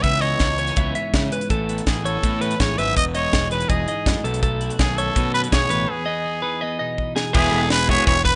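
A raspy, growling trumpet carries the melody up front from the start of this wistful, playful math rock and midwest emo piece at 164 BPM in E major, over compressed twelve-string electric guitar accompaniment, dark clean guitar arpeggios, punchy fuzz bass and a crisp, airy fusion drum kit with a high-tuned snare, until a break at 5.9 s and a drum fill lead to a lo-fi, double-tracked overdriven garage guitar riff entering at 7.3 s, captured in a rough home demo mix with light small-room reverb.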